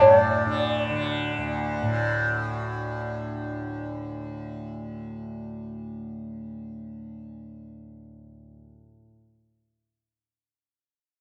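Devotional and meditative, this short fragment of Indian classical music, cut from a longer piece, moves in a straight three-beat metre. A hollow bamboo bansuri carries the melody around D5 with a soft attack and gentle vibrato, sounding pure and distant before it falls silent at 1.1 seconds. Beneath it, a tanpura sustains a drone from D2 to D3 until 9.0 seconds, its softly plucked strings bright, buzzing and shimmering up front in the mix. Both instruments carry the grain of cassette tape, and the tuning sits slightly above standard pitch, at A4 = 444 Hz. A moderate spring reverb and the intimacy of a home cassette recording give the sound a quiet, private character.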